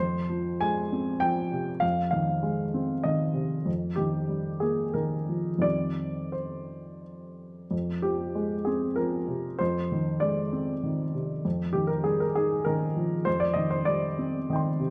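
A woody upright piano plays alone throughout, its polished tone sitting up front with a short sustain that keeps each chord clear and close. This intimate, reflective piece of neoclassical minimalist piano moves in 3/4 with a rubato feel, drifting between about 84 and 100 BPM in F dorian. Across a range from F2 to C6, the harmony circles through Fm, Ab6/F, Ebadd9/F and Cm/F, holding the F in the bass beneath each change. The same progression plays twice, starting again at 7.7 seconds and running to the end at 14.9 seconds. A moderate recital-hall reverb of 1.6 seconds surrounds the instrument, and the dark, warm production gives this short fragment of a longer work a hushed, private character.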